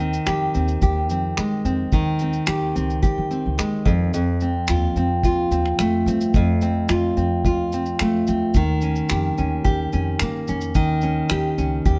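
The fingerpicked nylon-string guitar sits up front, bright and full-bodied with a deep classical tone, and finger squeak adds intimacy to its accompaniment. This is a heartfelt, sunny acoustic pop excerpt in Ab major, moving at 109 BPM in a straight 4/4. Beneath the guitar, a pizzicato upright bass with gut strings gives a woody, thumpy low end. A cloth-damped drum kit, dry and dark with a tight kick and a rolled-off top, joins at 0.1 seconds with finger snaps and shaker. The harmony moves from Abmaj7 over Eb to F7 at 3.9 seconds and Eb7 at 8.5 seconds, while the band, playing live together, is wrapped in a moderate stone-room reverb.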